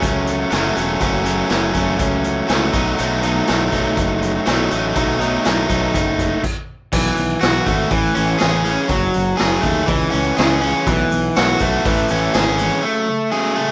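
A moody, restless indie rock cut opens at 122 BPM with two crunchy overdriven guitars playing riffs, one bright and up front, the other very quiet beneath it, over a fuzzed, overdriven fingered bass and a raw garage drum kit with a boomy kick, a medium-tuned snare, hi-hat and crash that sounds saturated and gritty with a rolled-off top. Moving from F#m to B7, the band halts for a brief stop at 6.4 seconds before a second passage cycles through B7sus4, Amaj7, F#madd9 and C#m, with a grainy egg shaker slipping in behind at 10.9 seconds. Bass and drums drop out at 12.7 seconds, leaving the guitars to carry F#madd9 through the closing break, all in a dry, rough home-demo mix.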